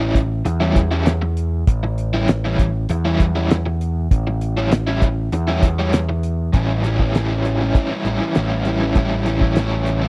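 This short excerpt of psychedelic rock opens with an overdriven semi-hollow guitar and a growling picked electric bass starting together on an A7 chord, moving at 99 BPM in a straight 4/4 in A mixolydian with a kaleidoscopic, hazy mood. The double-tracked guitar plays the riff with tremolo, its hollow-body tone sitting up front in the mix, ranging from A2 to E4. Beneath it, the overdriven bass, direct and amped, holds the low end between A1 and E2. A cloth-damped, thuddy drum kit of hi-hat, kick and snare comes in at 0.1 seconds, sounding dark and smooth with a fat snare, tight kick and a rolled-off top, and it sits a little louder than the strings. The piece shifts into a new section at 6.5 seconds, with all three parts continuing to the end of the cut. The sound is dry and close, like a 1970s studio recording with little reverb.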